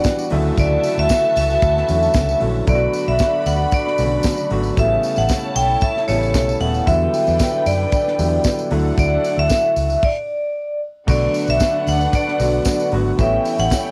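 A bright, ringing vibraphone played with hard mallets carries the melody up front, its slow motor vibrato coloured by cassette tape, in this glamorous, celebratory disco excerpt at 114 BPM in D major, joined by lush bowed strings and a clear, punchy French horn section in the background, both bathed in plate reverb, plus an intimate grand piano with audible action noise, a dark, round muted electric bass, a tight, dry funk drum kit with a high-tuned snare and a jingly tambourine, before the groove halts for a stop from 10.0 to 11.1 seconds, all captured in a small room on a home cassette recording.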